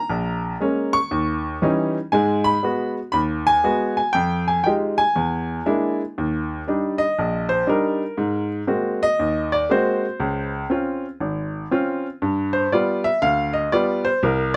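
A clear baby grand piano carries this solo jazz piece entirely on its own, playing from the first moment to the end at 14.6 seconds. The mood is sophisticated and swinging, with a medium tempo of 119 BPM in 4/4, a swing feel on the eighth notes, and a home key of Eb major. The opening passage moves through richly colored chords such as Bbm7, Eb7b9 and Fm9, then shifts at 6.2 seconds into a second passage that settles on Ebmaj7 before moving through Ab9 and Dbmaj7 to G7. The piano spans a broad range from Ab1 up to Db6, and its tone is natural, with short sustain that keeps each chord distinct. Close, detailed microphones and very little reverb place the instrument up front in a dry, intimate sound, as if this moment were lifted from a longer performance.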